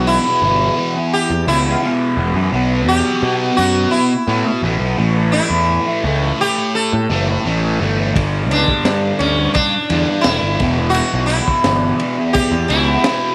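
A buzzing, shimmering sitar carries the melody with tape echo over a bright, double-tracked fuzz guitar riff with phaser and a round, overdriven fuzz bass in this dark, trippy psychedelic rock excerpt in E dorian at 86 BPM, with a gritty breakbeat kit of punchy kick, high-tuned snare and dark ride cymbal entering at 8.2 seconds in a small room.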